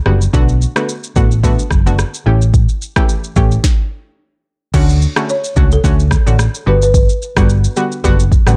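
Afrobeats with a joyful, romantic glow, this short cut pairs a round, up-front hollow-body electric bass and a deep-kicked, sharp-snared afro-pop kit, its crash, rim click and shaker roughened by 12-bit sampler grit, with a warbling, chorused analog pluck over lightly swung Bm7, A7, Dmaj7 and Gmaj7 chords, pausing for a brief stop at 3.6 seconds before a woody, rustic marimba melody with delay arrives at 5.3 seconds in a dark, warm mix.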